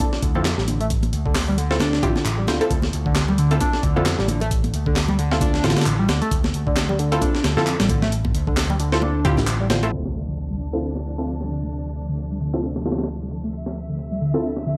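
Energetic and raw, this breakbeat excerpt in D minor runs at 133 BPM with a swung feel, driven by a gritty, up-front sampler-style drum kit with a thumpy kick, a screaming, guitar-like overdriven synth lead riff, a round, punchy picked electric bass, bold orchestra-hit-like synth stabs, bright congas in the background and layered electronic handclaps until just before the section change at 9.9 seconds, when a dark, lush symphonic string section enters with sidechain pumping alongside a very quiet impact while filter sweeps run across the stabs and strings, all captured in a dry hardware recording with vinyl crackle.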